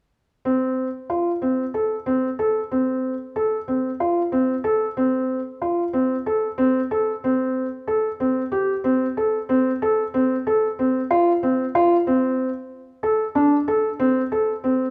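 Set in a straight 7/8 at 186 beats per minute counted in eighths, this contemporary instrumental passage from a longer piece feels pensive yet urgent. A felt-muted upright piano plays alone from 0.5 to 14.8 seconds, staying between C4 and A4 with a mellow, intimate, short-sustained tone that sits up front, tuned to A4 = 435 Hz. A moderate recital hall reverb surrounds the piano, and the music moves into a new section at 9.5 seconds.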